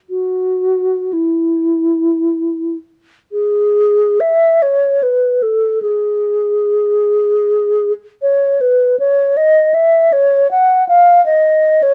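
A mellow, wooden-headed alto flute plays alone from 0.1 to 11.9 seconds, its hollow, airy tone carried by vibrato and a crisp attack, with rolled-off highs that keep it soft-edged even though it sits up front. This short classical passage, cut from a longer piece, unfolds in a free, rubato triple metre with a lyrical, nostalgic mood, settling into its second section at 3.3 seconds. Light reverb and a dark production frame the single line.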